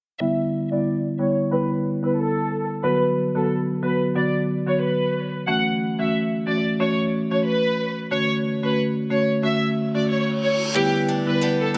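A lush violin section carries the melody with vibrato and portamento over a woody marimba in this hypnotic, bouncy dancehall excerpt at 91 BPM with a swung 16th feel, both filtered under a sweep through Em7, Bm, F#m7 and Dmaj7 in light reverb until an electronic reverse cymbal at 10.1 seconds leads into a bright, boxy picked acoustic guitar playing swing-style arpeggios with finger squeak from 10.8 seconds as the chords return to Em7.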